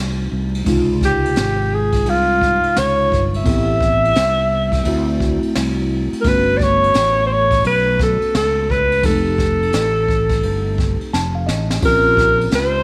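Vinyl crackle and light reverb frame this mellow, smoky jazz-hop excerpt with a swung feel, where a breathy alto saxophone, up front with vibrato and scooped notes, carries the melody from 1.0 seconds over a phaser-tinged tine electric piano heard through its built-in speakers, a fretless electric bass with ensemble chorus, and a brushed kit with dark cymbals, a high-tuned snare and a boomy kick, while a piano fill at 10.8 seconds, joined by a drum fill, leads into a new chord at 11.8 seconds.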